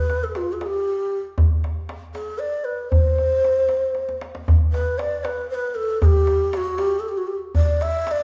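Persian modal ensemble music in a straight 6/8, festive and passionate, cut from a longer piece. A low ney carries the melody between F4 and E5, breathy and mellow with vibrato and a crisp attack, miked close and set up front, while a deep, dry tombak sits just as near. A tombak fill at 4.0 seconds leads into a new section at 4.5 seconds, all within the reverberant glow of a recital hall.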